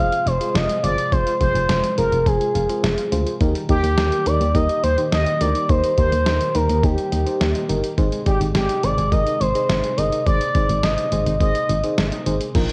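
Synth-pop at 105 BPM, upbeat and wistful, this fragment of a longer piece sets a smooth, vibrato-laden synth lead with chorus and tape echo over a tremolo FM electric piano, very quiet full-bodied string-machine cellos, a faint detuned analog pluck tracing arpeggios, a punchy, dark FM bass and a muffled, pitched-down sampler drum kit entering at 0.1 s with thumpy kick, all within a home cassette recording's spring reverb as the chords move from Fm to Eb at 3.4 s and Ab at 8.0 s.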